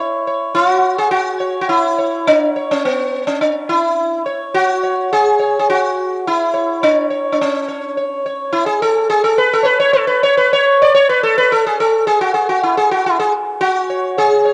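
In a straight four-beat pulse, this short Indian classical passage is carried by a lone sitar playing solo for its full 14.5 seconds, its mood longing and introspective. The plucked sitar sits up front with a buzzing, round tone and shimmering sympathetic strings, colored by a cassette-tape character. A wet spring reverb and small-room ambience surround it, giving the homemade cassette recording an intimate, slightly worn feel as it is cut from a longer piece.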